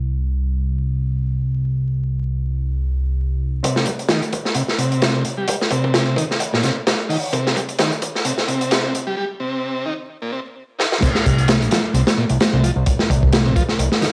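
Raw and energetic, this breakbeat cut from a longer piece moves at 130 BPM in C minor with a swung sixteenth-note feel and a lo-fi cassette character marked by vinyl crackle. It opens on a fat, detuned analog bass alone, a thick sawtooth and square-wave tone with a moving notch and filter sweep, holding low over an unresolved, chordless start. At 3.6 seconds the crunchy breakbeat kit and a buzzy vintage combo organ arrive on C minor, the organ riff carrying heavy vibrato through tube saturation, tape echo and a filter sweep as the section builds. The drums sound gritty and saturated, with a tight kick, medium-tuned snare, dark cymbals and a rolled-off top sitting up front in a studio room. A break at 9.2 seconds and a drum fill lead to the drop at 11.0 seconds on a C7 chord with its third omitted, and the bass returns at 11.3 seconds alongside the organ and kit. A moderate reverb gives the parts a modest sense of space.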